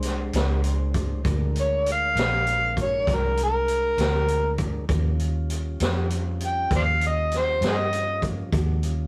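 A slow 12/8 blues rolls along at 66 beats per minute in dotted quarters, with a straight, laid-back swagger in Bb mixolydian, cut from a longer piece. The vintage acoustic drum kit sits up front in a studio-room sound, with a punchy kick, a high-tuned snare and hi-hat, mid-forward and rolled off on top. Alongside it, a dark, round, foam-muted fingered electric bass plays through an amp, punchy and close. A soft, flute-like tonewheel organ holds clean, mellow sustained chords with audible key click through a slow rotary speaker, moving from Bb9 to Eb9 at 4.9 seconds. At 1.6 seconds an amplified, overdriven harmonica takes the jazz-style solo melody, gritty and upfront with vibrato, tongue slaps and scooped notes, before dropping out at 8.2 seconds. The whole thing has the rough feel of a rehearsal-room recording with light reverb and warm saturation.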